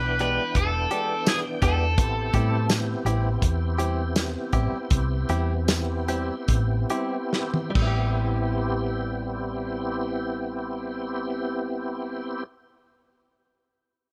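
A straight-eighth 4/4 feel sits between 67 and 84 BPM and slows as the passage unfolds, carrying a mournful, soulful soul blues in A minor, with the harmony moving from E7#9 to Am7. A raw garage guitar opens with a bright, overdriven, picked melody wrapped in slapback echo, then falls away at 2.7 seconds. Beneath it, a full tonewheel organ with key click, chorus vibrato and a slow rotary speaker holds the accompaniment throughout, beside a round, dark hollow-body short-scale bass played with the fingers. A direct-recorded clean electric guitar adds twangy, scooped, compressed stabs. The small-room drum kit, with its tight kick, dark cymbals, rolled-off top and tambourine, sits up front and plays a fill from 7.3 seconds before stopping at 8.0 seconds. The whole passage is dry and close, a fragment cut from a longer piece.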